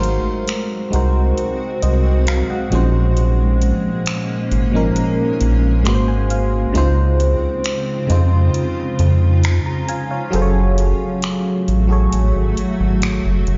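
Heard through a big sound system in a bare room, with stone room reverb and a dull top end, this romantic, tender contemporary R&B break in Db major moves at an unhurried 67 BPM, cut from a longer piece. A glassy, bell-like FM electric piano with chorus and phaser sits up front over a cloudy, evolving granular pad, while a rubbery, nasal square bass bounces darkly beneath. Electronic finger snaps and metallic hi-hat tick quietly in the background, and the electric piano slips in a short fill between 5.4 and 6.8 seconds as the chords drift from Ab7 through Bbm11 and back to Ab7 before settling on Dbmaj7 and Gbmadd9.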